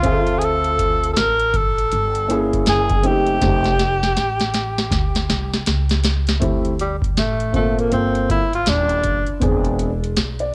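A home cassette recording with light reverb and a small-room ambience carries this mellow, nocturnal jazz-hop groove at 80 BPM, swung on the sixteenths, as cut from a longer piece. A booming analog drum machine with a deep kick, crisp snare and metallic hats sits up front on tape, with a drum fill from 3.4 to 6.4 seconds. It plays alongside a woody, growly pizzicato upright bass roughened by transformer saturation, and a dark grand piano whose action noise is audible through the cassette grain, moving through chords such as Dm7, Fadd9 and Gm11. A breathy tenor saxophone with vibrato, scooped notes and tape echo carries the melody up front and takes a solo from 6.4 seconds until it stops at 9.4 seconds.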